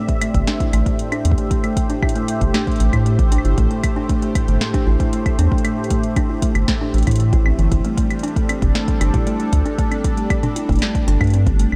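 IDM in A minor at 116 BPM, this eerie, melancholic fragment from a longer piece sets a smooth, detuned sawtooth pad with chorus under buzzing, woody kalimba arpeggios that ring through delay. A booming analog drum machine with metallic hats, claves, toms and a tonal snare joins a deep, tape-warm electronic kick, while a round, up-front bass with tube saturation carries the low end. Light reverb gives the production a dark, warm cast as the harmony moves from Am7 to G5 at 7.7 seconds.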